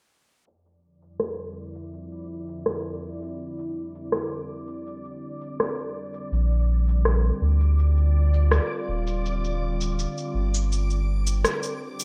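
A straight 82 BPM pulse in 4/4 from an up-front electronic shaker and rim click, muffled by a low-pass filter and swept from 0.5 seconds, carries this delicate, pastoral folktronica excerpt. A warbling, nostalgic, lo-fi tape-like pad with chorus, phaser and its own reverb holds sustained chords from 1.2 seconds, while a reversed, dreamy, granular swelling texture glimmers high above. A round, deep sine sub bass enters at 6.3 seconds as the harmony moves from F5 through Bb to Ebmaj7, all within a rough, dry home-demo mix.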